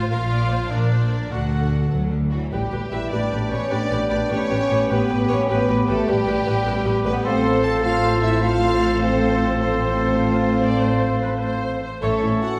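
Mellow French horns enter with sustained chords at 2.3 s in this triumphant, adventurous excerpt of heroic film score at 101 BPM in 12/8, joined at 2.5 s by soft trombone chords and by bright clarinet, cor anglais and airy flute second lines, while the lush, vibrato-rich violins carry the melody and a second line over intense violas, trumpet stabs, and a smooth, even bass of cellos and double basses, all set back in a wet scoring-stage reverb.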